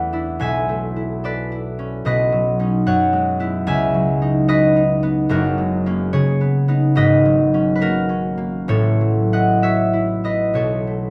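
Classical solo concert harp in a gentle, mysterious 6/8 with a free, rubato feel, its fingerpicked, ringing tone sitting up front in a moderate recital-hall reverb as it moves through lush extended chords from Bm11 to a closing B9, spanning F#1 to G#5 across this brief 11.1-second excerpt of a longer piece.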